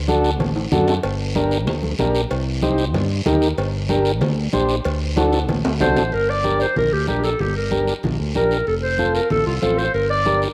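A soft-attacked clarinet in a classical style steps up front at 5.8 seconds, carrying a solo melody with a roomy, tape-tinged glow over a passionate, fiery cumbia at a brisk 189 BPM in straight 4/4. Beneath it, a bright, direct fingered electric bass anchors the groove from the start, while a vintage combo organ supplies mellow accompaniment with light vibrato and a cassette-tape color. Medium-tuned congas played with soft hands ring in the background alongside a raspy guiro, and cowbell and timbales add a metal-shelled clang with drum fills before dropping out at 6.0 seconds. The harmony moves through G harmonic minor over D, Gm, Cm and D7, then settles into G minor at 6.1 seconds with Gm and F chords. A wet spring reverb and small-room ambience give this short fragment of a longer piece the homespun character of a cassette home recording.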